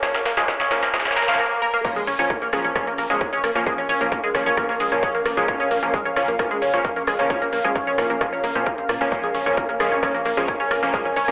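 Soaked in plate reverb and narrowed to a telephone-like band with a faint mains hum, this dreamy, industrial and intense peak-time techno excerpt opens with a short build-up: a drum fill, a filter sweep on a synth arpeggio and an electronic swell at 1.1 seconds lead into the drop at 1.8 seconds. Up front, a bright, detuned sequenced synth riff with chorus, overdrive, tape echo and sidechain pumping leads, while airy supersaw stabs with analog delay sit behind it. A distorted, layered kick and a punchy analog drum machine with snare, rim click, shaker, hi-hat and crash drive the groove, and a warbling, lo-fi pad and a mellow sequencer bass pump quietly in the background.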